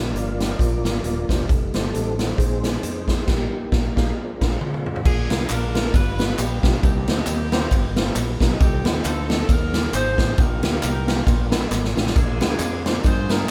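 This uptempo gospel cut, taken from a longer piece, opens with a lightly overdriven tonewheel organ taking a solo over the band, its key click and chorus vibrato turning through a slow rotary speaker from the background. A very quiet, clear concert grand piano accompanies with an intimate, somewhat boxy tone and long sustain, while a punchy fingered electric bass and an up-front big-band drum kit with a punchy kick drive a swinging 135 BPM groove in 4/4. The band hits an accent from 3.3 seconds, and the drums play a fill that leads into the next section. At 5.1 seconds a vintage saxophone section takes the melody with a warm, vibrato-rich ensemble sound, joined by tambourine and group handclaps sitting low in the background. Chords such as Gm7, Bb9sus4, Cm7 and Ab/Eb move under a reverent, uplifting mood, all heard as a band playing live together in one room with light reverb.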